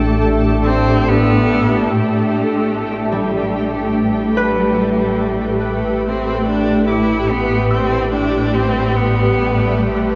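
A shimmering, ethereal pad with an octave-up glow opens this melancholic, serene ambient passage in three, resting on a G/A chord over a deep, round sub bass that fades in from 1.9 s as the harmony settles onto A5. A rich, bowed cello enters up front at 0.6 s with expressive vibrato and portamento, and from 3.1 s a bright, fingerpicked concert harp rings out arpeggios in the background, both trailed by shimmer reverb and analog delay. The echo-heavy mix sits in a wet chamber reverb with a cassette-tape texture, in a section cut from a longer piece.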